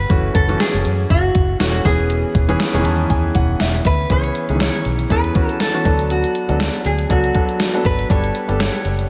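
This 1980s-style pop excerpt moves at 120 BPM in 4/4 with a light sixteenth-note swing, its moody, urgent feel carried by chords shifting from F#m7 through C#m7 and D6 to Gadd9. A bright, nasal lap resonator guitar played with fingerpicks and slide carries the melody through tape echo, over a clear, polished concert grand piano that adds a fill from 2.6 to 4.1 seconds. Underneath, a round, punchy muted fingered electric bass sits beneath an up-front, overdriven drum machine with a thumpy kick, gated-reverb snare, hi-hat and tambourine, all set in light reverb.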